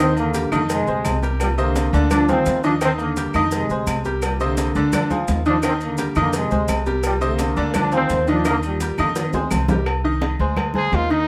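A dark, punchy trombone section carries the melody of this passionate, danceable salsa over a brilliant grand piano with audible action noise, a growly pizzicato upright bass, ringing high-tuned congas, round low-tuned cowbell and bongos, metal-shell agogo bells and timbales, grainy maracas and woody claves, all played together live in one room, before a drum fill at 9.0 seconds leads to a clear, close-miked trumpet solo entering at 10.8 seconds.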